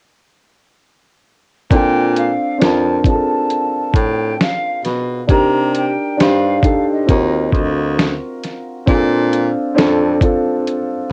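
Mellow and cosy, this lo-fi hip hop fragment in a swung 4/4 opens at 1.7 seconds with a gritty, compressed sampler-style drum kit with a thumpy kick, a dark, woody upright piano whose long sustain is softened by a low-pass filter, cassette tape and plate reverb, and a baritone saxophone carrying the bass with subtone, light vibrato, scooped notes and tube saturation, while a breathy, hollow flute, filtered and tape-worn, sings a distant melody until 8.0 seconds, all set in a moderate room on a home cassette recording.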